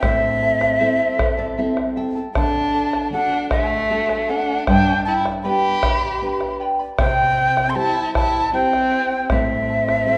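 In a straight 3/4 at 78 BPM, this wistful yet festive Andean folk ensemble excerpt in A minor moves through Am, D, G and C, with an airy, close-miked wooden quena carrying the melody up front with vibrato, a dark bowed violin singing a second line with portamento, a shimmering fingerpicked charango sitting in the background, a full-bodied nylon-string guitar that adds a fill from 0.8 to 2.3 seconds, and a deep bombo, all set in a wet recital hall.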